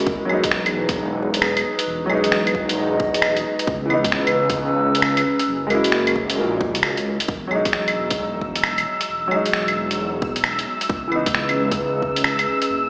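Swung sixteenths in 4/4 drive this rainy, nocturnal future garage cut, with a tight, up-front electronic kick and a muffled, tape-warm sampler kit of claves, finger snaps and hi-hat; the kick drops out briefly just before 7.3 seconds. A clear, woody upright piano and a warbling, nostalgic pad with chorus move through Emaj7, C#m7 and F#7 over a menacing, detuned saw bass that swells with tube saturation, and the piano, pad and bass all pump against the beat. A flickering, grainy texture enters at 7.8 seconds, and the whole mix sits in a wet, large reverb with vinyl crackle and a small-speaker tone.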